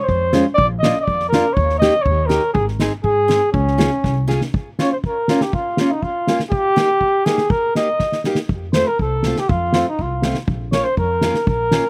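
A flugelhorn leads this bouncy, festive alpine dance band tune, playing up front in a classical style with a light vibrato and a warm tone. It opens in Db major at 121 BPM in a straight 2/4. A bright picked steel-string acoustic guitar, with fresh strings and a slapback echo, fills in the accompaniment. The soft-mallet drum kit, with its fat snare, boomy kick and hi-hat, sounds like a big room and sits up front, adding a couple of short fills along the way. At 4.5 s the music turns to Bb dorian for a second section, and the woody, thumpy pizzicato upright bass, silent during this turn, returns at 8.5 s. The recording was made outdoors with little reverb, and this short excerpt is cut from a longer piece.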